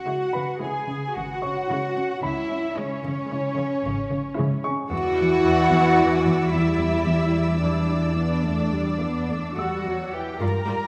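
A straight, steady pulse in 5/4 at 110 BPM drives this tense, mysterious stretch of suspense film score, cut from a longer piece. Con sordino string sections carry a veiled, dark colour: a cello riff moves low while a second cello section holds the bass, violas fill in the accompaniment, and violins split between a faint melody and a second line. A muted double bass section enters at 1.2 seconds to deepen the bottom, and a lush, vibrato-rich violin texture joins high above at 4.9 seconds, just as the harmony moves from C sharp minor to E minor seventh. Through it all, a clear, intimate grand piano adds a polished texture, its action noise audible up close. A moderate concert hall reverb gives the ensemble a spacious, shadowy depth.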